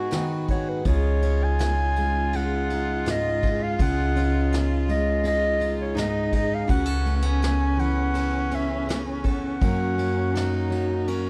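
This short cut from a tender, hopeful acoustic folk-pop ballad opens with a bright, full-bodied fingerpicked jumbo steel-string guitar, a woody, growly pizzicato upright bass sitting up front, a smooth bowed cello carrying a second line with vibrato and a touch of tape echo, and a reedy, breathing vintage pedal harmonium holding sustained chords in the background. A distant, roomy brush kit joins at 0.1 seconds, with a punchy kick, a medium-tuned snare and ride cymbal giving a soft, straight pulse in 4/4. At 0.5 seconds a warm-toned clarinet takes the melody in a classical solo style, floating above the strings and reeds. The harmony moves from G#m7 through a long stretch on C#sus2, then Aadd9/C# before settling on F#. Light reverb and a dark, warm production give the whole a gentle, intimate glow.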